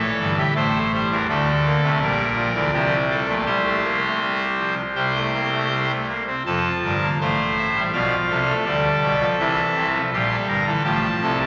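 A pipe organ on a bright, brassy trumpet stop carries this joyful, elegant baroque-style fugue entirely on its own, its chiff and period voicing sitting up front across a span from deep pedal tones to a high treble. The short cut from a longer piece moves in a straight four-beat pulse through two sections, turning at 6.4 seconds from an opening passage to a second that runs to 11.5 seconds. A lingering church reverb and a vinyl crackle wrap the organ in a spacious, aged sound.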